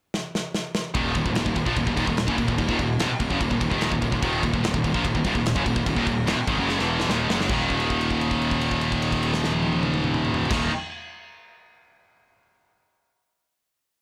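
A blown-out, overdriven studio recording carries this short, relentless and dark heavy metal piece, which opens with a drum fill from an acoustic small-room kit whose tight kick and clipped, medium-tuned snare sit up front beside crash, ride and toms. At 0.9 seconds, two bright, scooped high-gain electric guitars enter with a picked, distorted power-chord riff over a metal drive groove, doubled by a growly, fuzz-laden picked bass playing driving eighth notes. A second drum fill leads into a final chord at 7.5 seconds, held until 10.5 seconds.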